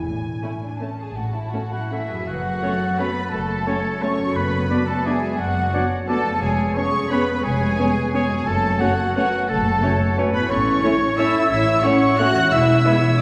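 Classical orchestral ballroom waltz in F# minor, festive and elegant, with a rubato 3/4 lilt around 155-190 BPM, where a lush violin section carries the melody over ringing harp arpeggios, dark cellos and a rich, focused double bass section. A second, close violin section and a distant viola accompaniment enter at about 0.4 seconds, a clear oboe and an airy flute join at about 1.7 seconds, a vintage-toned clarinet follows at 2.3 seconds, and very quiet mellow French horn chords and background trumpet stabs fill in from about 2.6 seconds, all set back in a wet concert hall reverb in this brief cut from a longer piece.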